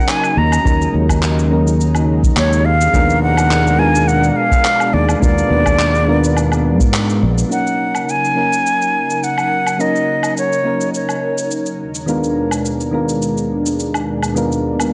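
Warm and relaxed, this sunset chillout excerpt in Eb minor moves at 105 BPM with a light 16th-note swing, as an airy, expressive jazz flute with tape echo and vibrato carries the melody up front until 11.8 s over round, warbling electric-piano-like synth keys and a thick, detuned unison pad. A direct, chorused fretless bass and a deep analog kick drum anchor the groove alongside gritty, sampler-style handclaps, shaker and woodblock; the kick stops at a band accent at 6.9 s, and the bass follows at 7.4 s. From 7.5 s a filter sweep shapes the keys, and the whole recording has a dry, cassette-tape grit with light reverb.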